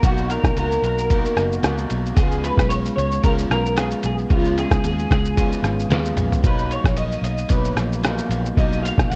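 Worn, warbling cassette tape gives this short cut from a longer piece its hazy character, with a light reverb around the band and a wobbly pitch drift running through the whole recording. It's laid-back, sunny indie and bedroom pop at 112 BPM in 4/4 with a gentle 16th-note swing, set in B lydian and tuned a touch flat of standard. Two electric guitars played through a small old amp carry the music, both picked, twangy and slightly broken-up: the lead melody is bright and sits in a mid-to-high register with an ensemble chorus and analog delay, while the accompanying guitar sounds warmer lower down, treated with analog chorus and its own warbly drift. A vintage muted fingered bass adds a dark, round, foam-muted low end with tube saturation. Up front, a muffled, pitched-down sampler-style kit with 12-bit grit mixes a thumpy kick, medium-tuned snare, rim clicks, ride, shaker and toms, and plays a fill from 5.9 to 6.4 seconds. 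The harmony moves from Bmaj7 to C#7 at 2.2 seconds and comes back to Bmaj7 at 6.4 seconds.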